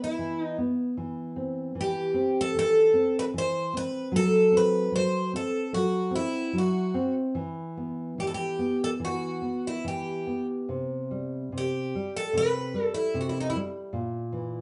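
A loose, rubato pulse around 74 BPM in 4/4 carries this brief fado passage in E minor, passionate and mournful in mood, cut from a longer piece. A picked twelve-string acoustic guitar sings the melody up front, its bright, shimmering, octave-doubled tone ringing out until about 13.6 seconds. Beneath it, a thumb-plucked nylon-string guitar supplies accompaniment with a deep, warm classical body, also placed close and continuing to 14.6 seconds. The harmony moves from E5 through Am/E and F#dim, returns to E5, touches C5, and closes on a rootless F#7/A# at 13.9 seconds. The two players sound as if they're together in one room, wrapped in a wet studio reverb, with a mellow top end that keeps the sound intimate.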